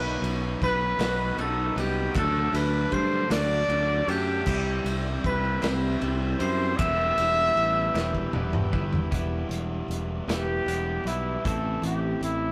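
Cool and restless, this slow 6/8 indie rock excerpt in E minor at 52 BPM sets a roomy, distant trumpet melody with light vibrato up front over a punchy, bright fingered bass, a loose drum kit with dark cymbals in a pumping small room, a twangy twelve-string electric guitar and an overdriven garage guitar riffing in the background, reedy combo organ chords, a faint sparkling glockenspiel line and crisp handclaps until a drum fill at 8.0 s hands off to a trumpet solo from 9.1 s, all in a rough, saturated rehearsal-room sound with wet reverb.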